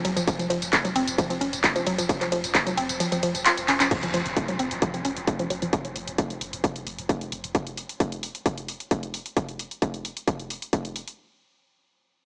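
Driving, hypnotic peak-time techno at 132 BPM in straight 4/4. A woody, wave-folded pluck riff with chorus, tube saturation, 12-bit sampler grit and tape echo sits up front until 5.7 seconds, over a thick, saturated sub bass pumping in the background and a techno kit of crash, ride, hi-hat, tambourine and handclaps, all soaked in huge dreamy reverb with a small-speaker sound. A distorted electronic kick drops out from 3.0 to 3.9 seconds, and after a drum fill and band accent, a very quiet impact and a filter sweep open the next section at 3.9 seconds.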